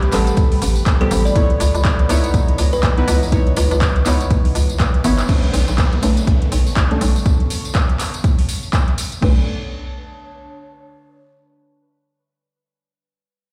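A punchy, overdriven electronic kick and a hollow, bouncy FM bass sit up front in this hypnotic, moody deep house excerpt at 122 BPM, cut from a longer piece and carrying a 59% swing on the sixteenths. Around them, a deep house kit adds metallic hi-hats, handclaps and a crash cymbal with overdrive and small room ambience, while a jingly, close tambourine rides along. Soft, dark chord stabs with chorus, phaser and tape echo move through Am9 and C#m9, backed by a smooth, detuned analog pad with sampler grit and a warbling, nostalgic lo-fi pad with a long release, both pumping against the kick. A woody, ringing kalimba plays a brief melody in the background from 1.0 to 3.8 seconds, washed in tape echo. After a drum fill, the chords shift to Bm9 at 5.3 seconds as an electronic downlifter enters and the ambient pad fades, and the tape-like pad lingers alone until 11.2 seconds. The whole mix sounds as if played on a big system in a bare room, with a large studio reverb around it.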